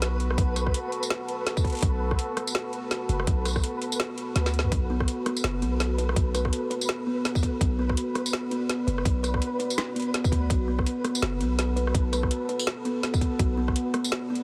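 A deep, moody pad of detuned, wave-folded chords opens this cinematic, heavy half-time drum and bass excerpt, carrying vintage sampler grit and sidechain pumping, while a long, sine-toned 808-style bass sits up front beneath it on a B minor chord. A drum kit with a woody snare, metallic hats, rim clicks, tambourine and toms plays from the start with a swung sixteenth feel, and a tight electronic kick joins at 0.4 seconds, both sounding re-recorded in a small room. A flickering, grainy granular texture hovers in the background throughout. The kick drops out briefly around a drum fill at 4.4 seconds, and at 4.9 seconds a buzzing, hollow-bodied kalimba enters with soft arpeggios trailed by dub echo. The whole mix has a heavily compressed, radio-like sound with light reverb.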